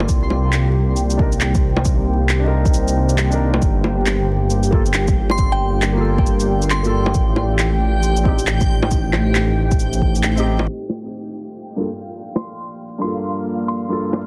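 A swung 136 BPM future garage groove in 4/4 and G minor, ghostly and rainy, sets a deep electronic kick (until 10.1 s) and produced bongos, shaker and handclaps under a rumbling, saturated detuned saw bass that stops at 10.7 s, while a felt-muted upright piano with tape echo and a moody chorused pad pump against the sidechain over Cm7, Gm7 and Am7b5, a reversed granular texture drifts in at 3.6 s, a crystalline FM bell with phaser surfaces twice, and after a band accent a filter sweep on the piano carries the final Gm7 through a dense, limited master laced with vinyl crackle.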